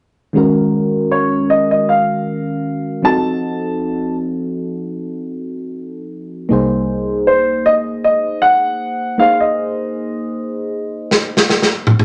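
A mellow FM electric piano opens this late-night, sultry neo-soul R&B excerpt in E-flat dorian, its soft, round chords touched by chorus and a noise layer, with each note struck quickly and then decaying. At a relaxed 78 BPM in 4/4 with a light sixteenth-note swing, the harmony moves through Ebm9, F7b9, Ab9/C and Bb9sus4. Just after the electric piano, a natural-sounding baby grand piano carries the melody in its upper register, sitting up front over the accompaniment. A dark, foam-muted vintage electric bass adds a round, punchy low note between 6.5 and 9.2 seconds. During the closing break, a crunchy breakbeat kit bursts in at 11.1 seconds with a gritty, saturated fill on snare and toms, placed up front with a rolled-off top. The whole excerpt sits in a moderate studio reverb, and the mix has a softened high end that keeps the mood late-night and sultry.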